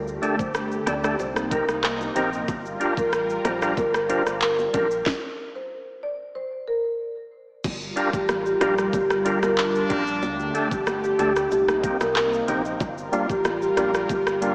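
A straight, bouncy 93 BPM dancehall groove in G minor drives this tough excerpt, built on an electronic island pop kit with a knocking kick, sharp snare, metallic hats, handclaps, rim clicks, shaker and crash, all re-recorded in a large room, with round, low-tuned bongos played with hard hands very quietly beneath and a deep sine-and-triangle sub bass with octave anchoring the low end. A woody rosewood marimba carries the melody through a diffuse ambient delay, a lightly overdriven tonewheel organ with third harmonic percussion spins through a fast rotary speaker and pumps with the sidechain, and a thick, detuned sawtooth pad adds chorus, phaser and pumping over sustained Dsus4, Cm7 and Gm7 chords. The harmony halts for a stop from 5.1 to 7.6 s, a distant horn section with light vibrato touches in briefly at 9.6 s, and the whole dreamy mix is soaked in lush hall reverb with a small-speaker sound.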